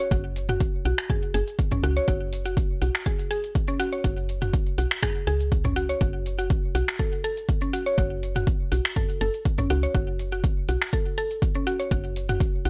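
Driving and hypnotic, this afro house excerpt moves at 122 BPM in 4/4 with a straight feel, centered on F# minor. A mallet-like synth pluck sits up front, playing arpeggios between C#4 and C#5 with a round, percussive, mellow tone, thickened by chorus, echoed by digital delay and breathing with sidechain pumping. Beneath it, a dark FM bass with a woody, soft character holds the low end from F#1 to C#2, its fast attack giving way to a decaying tone, warmed by tube saturation and pumping with the sidechain. An overdriven, punchy electronic kick enters at 0.1 seconds and sits prominently in the mix, while a layered deep house kit adds cabasa, finger snaps, toms and metallic hi-hats with a tape-warm character. The dry sound carries little reverb, keeping the groove tight and focused through to 12.7 seconds.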